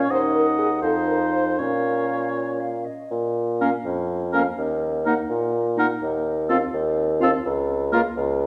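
Lively and cheerful, this quick classical-period movement for wind quintet moves in a rubato 6/8 at 83 BPM (dotted quarters) in Bb minor, cut from a longer piece. A hollow, pure silver flute carries the melody with vibrato and a crisp attack from a distance, while the oboe's second line has light vibrato, the clarinet's soft-attacked accompaniment stays smooth on top, and a warm French horn sits in the background. Up front, a mellow, roomy bassoon holds the bass and lingers alone from 8.0 to 8.5 seconds as the harmony passes from Ebmadd11 through Bbm to F7(no3)/Eb, all within a dark production and a reverberant recital hall.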